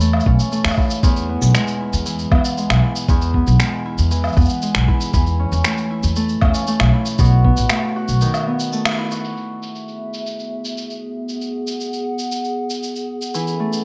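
Bright, ringing Celtic harp arpeggios with tape echo open this playful, delicate folktronica excerpt in E major at 117 BPM alongside woody, gut-strung pizzicato upright bass and muffled, low-pass-filtered electronic cabasa, woodblock and finger snaps, with a thumpy, compressed electronic kick drum joining moments later; a short break at 8.2 seconds brings a band accent, and from 9.8 seconds a warbling, nostalgic lo-fi pad of detuned, chorused sustained chords joins the harp and percussion.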